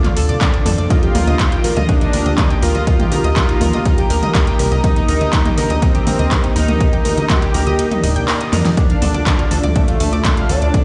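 A punchy, overdriven electronic kick sits up front in this dark, cinematic melodic techno excerpt alongside a deep house kit with a fat snare, metallic hats, handclaps and toms, and a funky, plucky analog bass, with sidechain pumping breathing through the bass, lead, pads and arpeggios. A fat, nasal analog lead with vibrato and delay carries the melody over a lush unison pad moving from Dm to Eb, while a round, detuned analog pluck spins chorused arpeggios and a warbly, lo-fi tape-like pad adds nostalgic texture in the background. The kick drops out from 7.8 to 8.8 seconds as a background electronic swell sounds and a drum fill lands at 8.5 seconds before the return to Dm, all within a stone room reverb heard through a big sound system.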